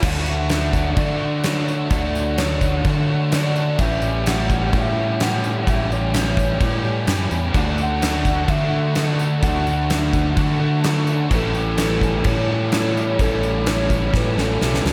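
Wistful and dreamy, this shoegaze and dream pop rock passage moves at 128 BPM in a straight 4/4, swaying between Dmaj7 and A7 in D major, and it is cut from a longer piece. A hollow, woody clarinet-like synth lead carries the melody from 0.3 seconds, sustained and mellow, shimmering with chorus and analog delay above a thick bed of guitars. A biting overdriven guitar with analog chorus drives the main riff, joined by a very quiet crunchy overdriven guitar, a dark double-tracked overdriven guitar whose riff returns at 7.5 seconds, and a lo-fi, slightly broken-up guitar through a small old amp playing soft arpeggios. Underneath, a fuzz-drenched fingered electric bass sits up front beside a gated 80s drum kit with a fat snare, tight kick and bright crash cymbals, while a jingly tambourine rings in the background. A drum fill at 14.1 seconds closes the passage, and the whole mix is soaked in a huge ambient reverb that gives it a floating haze.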